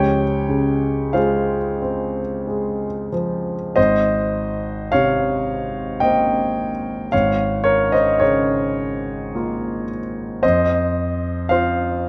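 A clear, intimate concert grand carries this short fragment of impressionist solo piano alone, its deep bass and long sustain ringing close up, with the noise of its action audible. The hazy, luminous mood unfolds in Ab major at a slow, rubato 3/4 of 44-57 BPM, drifting from Dbmaj7 to Abadd9 at 3.8 seconds, then through Bbm7/Ab to a bare F5 at 10.4 seconds. A moderate recital-hall reverb and a dark, warm production frame the piano's range from Ab1 to G5.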